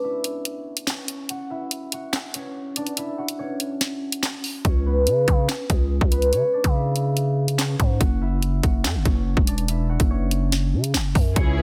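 A fingerpicked concert harp opens this dark, tense drill excerpt, its ringing acoustic tone treated with a low-pass filter, delay and a filter sweep as it carries the melody over C#m and F#5 chords. The drill drum kit joins almost at once in a half-time feel at 143 BPM, with a hard-clipped kick, sharp snare, bright hi-hats and handclaps sitting up front. The kick drops out briefly from 3.8 seconds, and at 4.6 seconds a growling, buzzy 808-style bass arrives with a fast attack and decaying notes, as loud and forward as the drums. A lush, woody string section with vibrato touches in with bowed sustained chords only at 11.4 seconds, just as the clip is cut off. The studio reverb and dense, heavily limited modern master give the track a dense, heavy weight.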